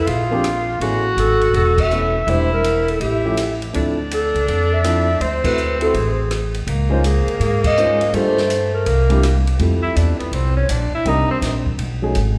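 A lush hall reverb surrounds this sophisticated, playful fragment of small-group jazz, a swinging bop tune in F major at 164 BPM, tuned to A4 = 437 Hz. A breathy clarinet with vibrato and scooped notes carries the melody until 9.4 s, while a vintage-toned tenor saxophone plays a second line beneath it. A woody, growly upright bass sits up front, and a compact cocktail kit, dry with dark cymbals, a high-tuned snare and a punchy kick, keeps time more quietly behind them. A concert grand piano comps through rich, shifting jazz harmonies with deep bass, long sustain and audible action noise, giving the sound an intimate, warm character. The band punches out several shared accents before the tenor saxophone takes a solo at 9.6 s as the piece is cut off.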